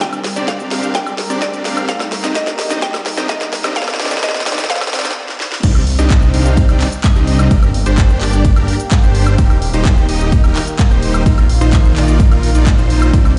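Festival progressive house at 128 BPM in C minor, emotional and powerful, this excerpt builds with a woody, gritty FM mallet pluck melody with dub echo, a background riser, drum fills and a filter sweep over an airy sidechain-pumping pad, a huge compressed supersaw riff and an up-front overdriven punchy kick with a house kit of cracking snare, bright hats, claps, cabasa, woodblock, ride and crash, then breaks at 5.2 seconds before dropping at 5.6 seconds as a thick, saturated, detuned saw bass enters beneath the pumping chords, all set in a stone-room reverb heard as if through a big sound system.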